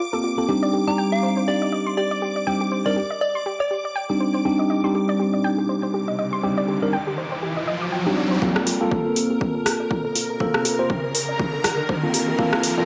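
Set in a moderate digital room reverb, this smooth, deep house excerpt in G minor at 121 BPM, with a swung 16th feel, opens on dark, round pluck arpeggios and a shimmering vintage string machine of violins, both pumping with sidechain, joined at 0.1 s by mellow tine electric piano stabs up front through phaser and digital delay; a pure FM synth bell carries a brief melody from 0.9 to 4.1 s, an electronic riser builds from 5.8 s, and at 8.4 s a punchy, overdriven kick enters, followed at 8.6 s by a metallic-hatted deep house kit with hi-hat and rim click, both in a small room ambience for the build-up.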